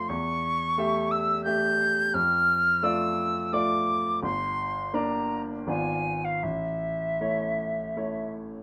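In a rubato 3/4 that drifts between 78 and 90 BPM, this melancholic, elegiac romantic duo for flute and grand piano unfolds as a short passage cut from a longer piece. The silver concert flute carries the melody high in its range with a pure, metallic tone, tongued notes and vibrato, while the up-front grand piano gives a brilliant, natural accompaniment reaching down into its deep bass. The harmony moves from A7/E through Dm/F and Gm to a G#dim7 before settling on A at 6.4 seconds, all in a moderate studio reverb.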